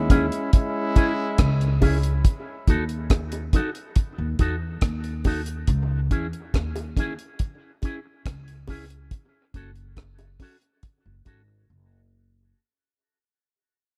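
Spacious and meditative, this dub reggae passage, cut from a longer piece, moves in a straight four and fades out across its full length. A dark horn section with light vibrato and a smooth top opens with a brief second line soaked in dub echo, stopping at 1.8 seconds. Up front, a woody pizzicato upright bass anchors the low end, while a deep, dry reggae drum kit with a tight kick, rolled-off top, hi-hat and rim click carries the beat. A bright, twangy electric guitar, clean and picked through an envelope filter, adds echoing accompaniment, and high-tuned bongos struck with hard hands sit in the background, also trailing dub echo. Studio reverb gives the production a warm glow, with a break from 2.2 to 9.1 seconds, while the chords move from C#m through D#dim and back to C#m before settling on F#m.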